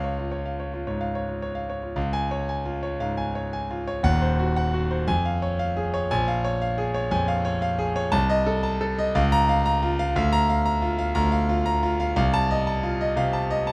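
A clear, smooth concert grand piano with a deep bass and a vintage, up-front presence plays alone in this brilliant, heroic fragment of a classical virtuoso piano study at 118 BPM in 4/4, moving with rubato through chords in D-flat major before shifting to B-flat major at 10.2 seconds, all captured with close, detailed microphones and light reverb.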